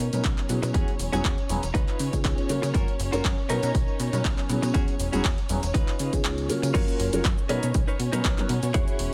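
This short cut from a longer filtered disco house track opens with lush, bowed string-section chords, a clean, direct-recorded electric guitar riff and a plucky, funky analog bass, all muffled by a low-pass filter and pumping against the beat. Within the first fraction of a second a dark, boxy baby grand piano with phaser, a dry, overdriven analog drum machine of hi-hat, handclaps, cabasa and crash, a background tambourine, and a punchy, overdriven electronic kick that sits up front all join at 120 BPM in 4/4 with a light swing on the sixteenths. The mood is sunny and joyful as the harmony cycles through Bmaj9, E69, C#9 and F#maj7 over a sawtooth-edged bass that ranges down to E1. The kick drops out at 6.2 seconds, and the tambourine stops as the drop arrives at 6.7 seconds, where the kick returns under the strings, guitar, bass and drum machine. The piano falls away at 8.5 seconds, shortly before the passage ends, and the mix stays close and nearly dry overall.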